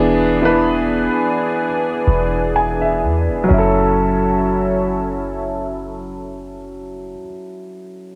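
A home cassette recording with light reverb and studio ambience frames this slow, sensual, late-night R&B fragment at 63 BPM in F# minor, with a lightly swung 16th feel and a filter sweep over its opening 3.5 seconds. Up front, an intimate concert grand piano with audible action noise carries the accompaniment until 8.2 seconds and adds a fill just before the harmony moves from E7 to F#m7. Meanwhile, a lush, detuned unison pad holds airy sustained chords, and a deep, boomy 808-style bass supplies a dark, decaying low end until both stop at 7.2 seconds.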